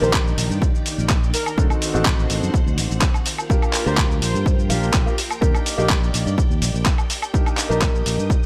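A short, sunny excerpt of filtered disco house opens with a bold, brassy analog synth brass melody, chorused and tape-echoed, set in the background over a smooth, vintage grand piano with phaser and a lush, sawtooth string machine ensemble carrying sustained chords with 12-bit sampler grit. A punchy fingered electric bass joins a gritty, overdriven sampler-style kit of handclaps, hi-hat, shaker and woodblock, which sits up front beside a tape-warm electronic kick that enters at 0.1 seconds, with sidechain pumping on the brass, piano, strings, bass and the kit's hats and percussion. The brass melody drops out at 4.6 seconds, and the rest ride a feel-good, straight groove in a digital ambience.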